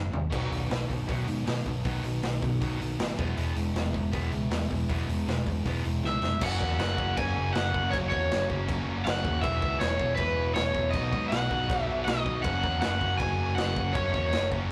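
Punk rock at 159 BPM in F# mixolydian, upbeat and rebellious, where a raw garage drum kit with dark cymbals and a punchy kick sits up front beside a growly overdriven picked bass, three distorted and overdriven guitars pick riffs in the background, and an up-front overdriven semi-hollow guitar with delay enters with a bright melody at 6.1 seconds, all caught in a rough rehearsal-room recording with tube saturation and light reverb, cut from a longer piece.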